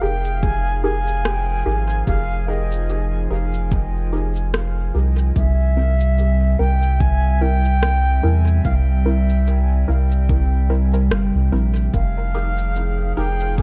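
This hazy, deep ambient dub excerpt opens with an airy, close-miked wooden flute singing a vibrato-tinged, tongued melody in its upper register. Beneath it sit a warbling, nostalgic tape-like pad with slow-blooming, dark sustained chords softened by chorus and reverb, muted detuned chord stabs plucked through a filter and coloured by phaser and dub echo, and a round, soft sub bass that sits up front and anchors the low end. An overdriven electronic shaker and rim click join at 0.2 seconds, their dub echo trailing off into the mix, and a layered electronic kick enters at 0.4 seconds, deep but tucked into the background. The groove moves at an unhurried 73 BPM in 4/4 with a gentle 16th-note swing, staying in F minor as the harmony drifts from Fm11 to C7 and back to Fm11 near 11.9 seconds. The sound is dry and close, with echo rather than room ambience giving the piece its sense of space.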